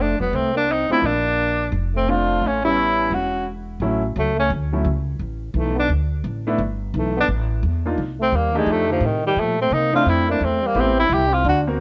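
Sophisticated and playful, this brisk small-group swing-and-bop jazz clip at 173 BPM in 4/4 puts a breathy, whispered tenor saxophone with vibrato and plate reverb up front on the melody, while a mellow trombone traces a second line in the background, a woody, thumpy pizzicato upright bass anchors the low end, and a concert grand piano with deep bass joins at 0.9 s to comp through rich harmonies such as Bbmaj9, Dmaj9 and F13 in a moderate studio room.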